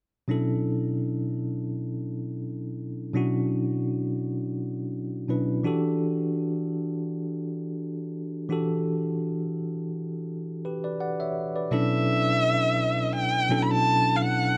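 A warm, bowed erhu carries the expressive melody from 11.7 s with vibrato and portamento, sitting up front over a bright, bell-like tine electric piano that has held the accompaniment since 0.3 s, moving from Bm11 to Em11 and back, in this sensual, late-night R&B piece at 84 BPM in B minor with a light swing on the 16ths and a moderate plate reverb.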